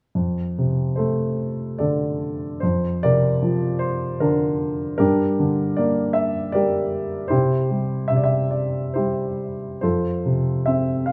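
A baby grand piano plays alone from 0.2 s to 11.1 s, its natural, up-front tone caught by close, detailed microphones in a touch of light reverb and spanning F2 to F5. This brief fragment of a longer classical piece is lyrical and peaceful, moving in 3/4 at a rubato 68-78 BPM in F major. The harmony passes from F6 through Bbadd9/F, Gm and C before settling home on F, giving the passage a warm, unhurried calm.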